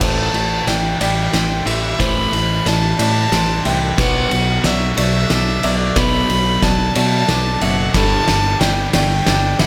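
An oversized, low-tuned drum kit sits up front in this euphoric, cinematic post-rock passage, its boomy kick, fat snare and dark crash and ride cymbals saturated and gritty in a bright, pumping stone room, with a drum fill running through the whole 9.7-second build-up at 60 BPM in 6/8. A clear, close solo violin carries the melody with light vibrato, an airy bow and a nasal, earthy tone, while a crunchy overdriven guitar drives the riff and a growly fingered electric bass holds the low end. Tucked in the background, a twangy, compressed electric guitar and a mellow felt-muted upright piano, with audible action noise, both play arpeggios through tape echo (which also colors the violin) over Am7, Bm7 and Gsus2.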